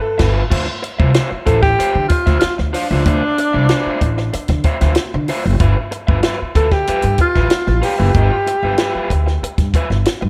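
Funk at 94 BPM in D dorian, hypnotic and funky, opening with a band accent before a distant, roomy alto saxophone with vibrato carries the melody over bright, crunchy overdriven guitar with spring reverb, woody pizzicato upright bass and a dry cocktail kit with dark cymbals, a high-tuned snare and punchy kick, moving from G13 to Dm9 and back to G13 at 5.6 seconds in this excerpt from a longer piece.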